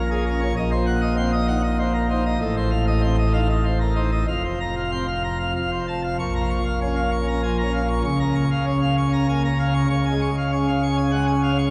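This classical organ toccata in Bb minor, at 97 BPM in a straight 3/4, sounds stormy and majestic as a solo pipe organ plays on a full plenum with brilliant mixtures, crisp chiff and a baroque voicing spanning F1 to Db6. The opening passage builds tension on the dominant F before the music turns back to Bb minor at 6.2 s and settles onto Db by 9.9 s. Heard from further back in a church with a 3.7-second reverb, this fragment of a longer piece rings with a resonant, cavernous grandeur.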